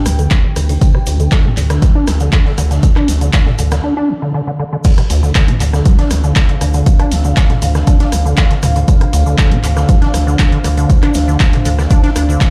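A straight 4/4 groove is driven by an up-front electronic kick, with a tape-warm analog drum machine adding handclaps, hi-hats, rim clicks, toms and crash, while a gritty garage kit of snare, hi-hat and shaker and a grainy tube shaker sit in the background of this gritty, driving acid house excerpt. A rubbery, resonant acid bass riff carries a filter sweep through the opening and across a break at 3.8 seconds, and the drop at 4.8 seconds lands on a Dm7 chord, underpinned by a round, wave-folded analog bass and a moody, detuned sawtooth pad with chorus and sidechain pumping. The mix sounds as though played on a big sound system in a bare room, wrapped in a large studio reverb.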